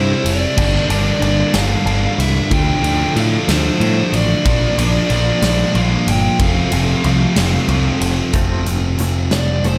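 An anthemic, restless stretch of quiet-loud alternative rock in 6/8 opens with a wall of three picked, overdriven and distorted rhythm guitars, a double-tracked crunchy one sitting in the background, under a biting lead guitar melody with slapback echo, while a growling, punchy picked bass sits up front and a huge arena drum kit with bright cymbals and a punchy kick crashes in at 0.3 seconds, before a lo-fi, slightly broken-up guitar through a small old amp adds tremolo-tinged arpeggios at 8.3 seconds as the lead guitar breaks into a solo, all in a studio reverb.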